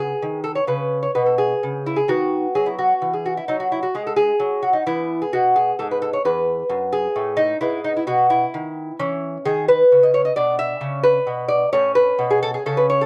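A lone lute opens the recording and plays by itself for the full 13.1 seconds: a baroque-style classical dance in E major with a radiant, dance-like mood. It moves in a lilting 12/8 at 87 beats per minute, counted in dotted quarters, and the rubato feel lets the pulse breathe freely. The fingerpicked gut strings sound bright and delicate, and the paired courses, some doubled at the octave, add a shimmering fullness across a range from E2 to E5. The harmony rests on E before passing through B and back to E, then settles toward A as this fragment of a longer piece breaks off. The close, dry studio sound with a 1970s character places the instrument up front, so every plucked note comes through clearly.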